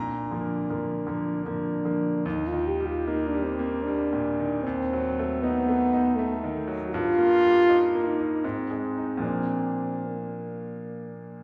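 In a flexible 3/4 at 77 BPM, with rubato and uneven beats, this romantic classical duet in Eb major unfolds as a warm, lyrical passage cut from a longer piece. A dark, punchy French horn sings the solo melody up front, while a bright concert grand piano accompanies with brilliant, polished tone and deep bass, moving through chords such as Ebdim7, Eb/G and Ab. Both players sit in the wet reverb of a church or concert hall.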